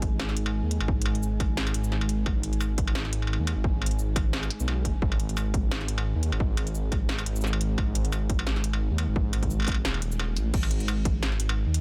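A dark, detuned sawtooth bass rumbles up front through tube saturation, driving this cinematic, spacious half-time drum and bass drop, cut from a longer piece, with a heavy electronic kick and an industrial kit of clanging snare, crisp hats, shaker, crash and struck metal. Behind them, a deep, moody ambient pad holds sustained chords with chorus, built-in reverb and sidechain pumping until 10.5 seconds. The kick drops out from 9.8 to 10.5 seconds before returning under a dense, heavily limited master.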